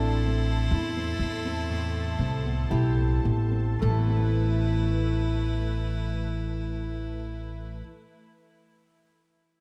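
A woody, up-front pizzicato upright bass anchors this intimate, heartbroken acoustic folk-pop ballad, with a full-bodied, thumb-plucked nylon-string guitar carrying the accompaniment and lingering alone until 8.2 seconds after the other parts stop at 7.8. A very quiet, mellow grand piano with audible action noise and long sustain sings the melody, while a nasal, airy-bowed violin with light vibrato and tape echo holds a second line. A lush, detuned sawtooth pad with chorus sustains chords, and a boxy archtop guitar picks arpeggios in the background, all under light reverb as the pace eases over the first 3.8 seconds of this excerpt.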